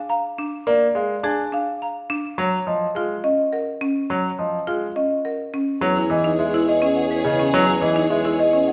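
Set in a steady, straight triple metre, this short cut from a longer classical piece in the minimalist pattern style feels hypnotic and bright. A woody rosewood marimba played with medium mallets carries the upper melody, its vintage, band-limited tone sitting just above a second marimba with hardwood bars and hard mallets. That second marimba spins arpeggios that are buzzing, dry and up front. From 0.7 s a brilliant, polished concert grand piano adds intimate accompaniment in its lower range, with deep bass and audible action noise. At 5.8 s the music moves into its second section, where a focused chamber violin section enters with rich, bowed sustained chords and vibrato, and a mellow, close-miked solo bassoon holds a single low bass note. The harmony moves from a rootless A#7 to D#m9 and settles on E69, all set in a moderate recital hall reverb.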